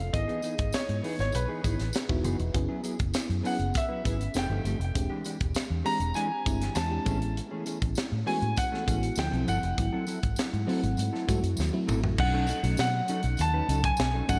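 Soaked in a dreamy plate reverb, this polished 1980s jazz-funk pop excerpt carries a bittersweet, urban mood, with a natural, up-front grand piano singing the melody through a touch of delay over a lush, detuned FM electric piano layered with a soft pad and subtle chorus. A dark, foam-muted fingered electric bass sits up front beside a tight funk kit with a punchy kick and high-tuned snare, while a clean, mellow electric guitar riff through analog chorus and a jingly tambourine in the background fill out the groove over shifting extended chords. A drum fill at 11.6 seconds leads into a new section at 12.2 seconds.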